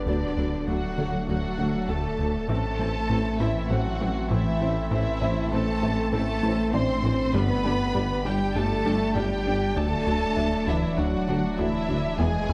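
A tense, futuristic hybrid orchestral and electronic film score cue at 99 BPM, moving through D, Am and G. A dark, distant violin section carries the lush, expressive melody over a smoother second violin line, with a quiet, portamento-laced viola section, background cellos, a very quiet double bass section, and mellow French horns, roomy trombones and a distant tuba holding sustained chords and bass. Underneath, a punchy, wave-folded analog bass riff is the most prominent part, joined by a thick, saturated sub bass, squelchy ring-modulated blip-pluck arpeggios with phaser, an evolving, warbling wavetable pad, and a felt-muted upright piano with audible action noise, all set in a wet scoring stage reverb.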